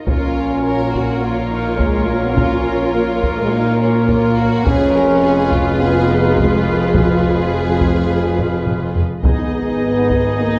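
A cinematic, epic orchestral film-score cue in a steady 4/4, cut from a longer piece, carries a relentless, epic mood across its brief span. A distant symphonic violin section carries the melody in the background, while a focused studio violin section adds a lush second line with a smooth top. Violas fill in the accompaniment, and a French horn section holds sustained chords that sit prominently in the blend, joined by a roomy woodwind section with light vibrato. Cellos and double basses anchor the low end with even, bowed tone, and a taiko ensemble struck with heavy sticks pounds beneath it all, breaking into a fill from 8.4 to 9.2 seconds. The harmony moves through dark minor and diminished colours, and a wet scoring-stage reverb gives the whole orchestra a grand, spacious sheen.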